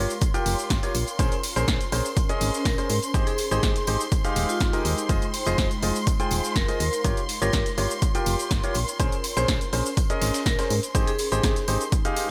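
Set in a small room with light reverb, this energetic, bittersweet piano house excerpt at 123 BPM pumps to the up-front, tape-warm electronic kick as an intimate grand piano riff with audible action noise, 12-bit sampler grit and delay rides over a round FM bass, a punchy analog drum machine with cabasa, hi-hat and snare, a very quiet tambourine, a faint gritty, overdriven breakbeat kit, distant lush violin chords, and an ethereal chorused pad, while a ringing vibraphone melody enters at 1.6 seconds in the background over Gm7b5, Bbm9, Abmaj7 and Fm7 chords.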